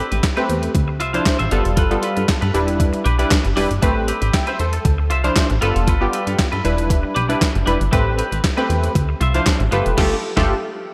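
An overdriven, thumpy 8-bit drum machine sits up front with crash, handclaps, hi-hat, kick and snare, driving this slick, funky early-eighties boogie funk fragment alongside a plucky, dark analog bass, a punchy detuned polysynth comp with chorus, and a bright, twangy clean electric guitar riff with subtle chorus, all cycling through Am9, Dm9, G9 and Em7 in a dreamy mix soaked in plate reverb before a band accent at 10.0 seconds.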